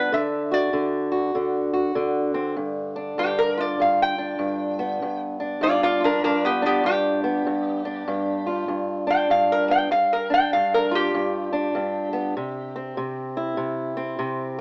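A swung 4/4 groove drives this rollicking, swaggering fragment of acoustic country blues: a bright, nasal metal-body resonator guitar, played up front with fingerpicks and a steel bar and bathed in plate reverb, carries the melody and takes a solo from 2.6 s until it stops at 12.7 s, while a dark, woody parlour steel-string acoustic guitar, fingerpicked on old strings, accompanies through to 14.6 s, the pair set in a small room and heard through an AM radio sound.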